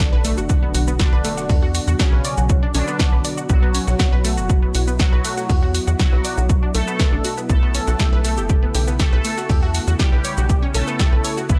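A quiet electronic sub drop opens this dark, cinematic melodic techno excerpt, alongside an up-front, punchy layered kick, a tape-warm analog drum machine with hi-hat, shaker and snare, and a very quiet, gritty sampler-style kit. A juicy, resonant sawtooth polysynth carries the melody through a filter sweep with chorus, cassette tape character and digital delay, while a lush, detuned unison pluck spins arpeggios with delay. A tight, driving sequencer bass and a bright, morphing wavetable pad in the background pump against the kick, moving from B minor to Aadd9 at 7.5 seconds in a digital ambience.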